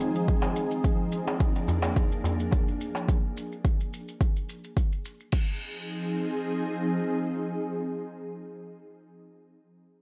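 Organic downtempo with a meditative mood, this short excerpt rests on an ethereal, airy pad of detuned sawtooth and triangle voices that holds sustained chords from Fm7 to Bb7 with ensemble chorus, built-in reverb and sidechain pumping, running until 8.3 seconds. An up-front, overdriven electronic kick sits beneath layered electronic shaker and crash cymbal, both with a gritty small-room character and both stopping at 5.4 seconds. A crisp, deep metal-shell darbuka played with soft hands adds live-room texture until 3.1 seconds, all framed by light digital ambience.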